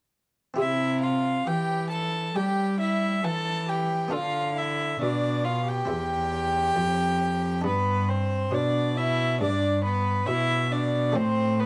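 A rubato 4/4 pulse at 68 BPM carries this dance-like, radiant baroque-style sonata movement in C major, cut from a longer piece, where a close, nasal solo violin with an airy bow sings the melody up front over a second violin's reedy gut-string line, a period-style cello bass also up front, and a muted, lute-like buff-stop harpsichord accompaniment that begins at 0.5 s before the strings join at 0.6 s, the harmony moving from C through G to a rootless F#dim/A at 11.2 s under light reverb.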